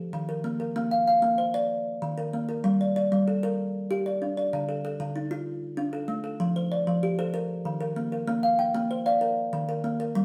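A solo kalimba carries this short excerpt from a longer piece, its woody, airy tone sitting up front from 0.1 seconds through to 10.2 seconds. The music is a Southern African traditional piece in an mbira-style interlocking cycle, set in 12/8 at 128 BPM counted in dotted quarters, with a straight feel and a hypnotic, warm mood. Plucked with the thumb on a solid board, the short notes range from D3 up to G5, and the instrument is tuned to A4 = 436 Hz. The harmony moves from Eb5 through Bb, Gm and Dm in the opening section, then shifts at 6.4 seconds to a second section that passes through F, Eb and Bb before returning to Eb5. The kalimba was recorded live in a stone room whose reverb lends a wet, ringing halo of about 0.9 seconds.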